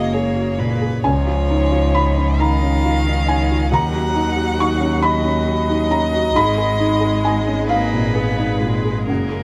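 Neoclassical piano and strings in a hopeful, tender mood, moving slowly in 6/8 with a free, rubato feel. A felt-muted upright piano sits up front with a soft, mellow and intimate tone, its action noise audible as it carries the accompaniment across a broad range. A single bowed violin, clear and close with vibrato, sings the melody smoothly and evenly, while a lone cello adds a second line from a more distant place in the background. A rich chamber string section holds sustained chords further back, focused and ensemble in character, and a bowed double bass anchors the low end, up front and full-bodied with vibrato. The harmony moves through gentle added-ninth and minor-seventh colours, and the players sound as though gathered live in one modest room with a moderate ambience, the passage a 9.4-second excerpt cut from a longer work.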